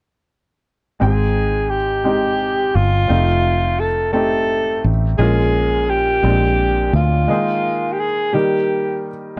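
A jubilant, hopeful gospel passage in 6/8 at 57 BPM opens at 1.0 seconds with an alto saxophone carrying the melody in a warm subtone, with light vibrato and scooped notes in a vintage jazz style. Alongside it from the same moment come woody upright piano accompaniment and a punchy, foam-muted fingered electric bass, all up front in a dry, close 1970s-style studio sound with light reverb. The harmony moves from Abmaj7 through F7 and Bbm7 in Ab major; the bass drops out at 7.3 seconds for a break over Ebsus4 resolving to Eb, the saxophone fades at 9.1 seconds, and the piano carries this cut from a longer piece to its end at 9.4 seconds.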